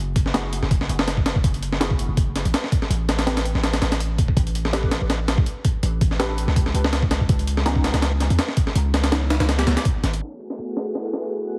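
Drum and bass with a jungle edge at 164 BPM in F# minor, this nostalgic, atmospheric excerpt sets a gritty, pitched-up breakbeat kit with a thumpy kick and high-tuned snare up front over a deep, mellow sine-style 808 bass and muted, detuned dub chord stabs drenched in phaser, chorus and dub echo in the background, moving through F#m11, Am11 and C#m11, until at 10.2 seconds the bass stops and a lush, thick detuned pad, a very quiet overdriven soul drum kit and a filter sweep join the breakbeat kit and stabs, followed at 10.7 seconds by a faint reversed, dreamy granular texture, all heard through a heavily compressed, radio-like sound with vinyl crackle.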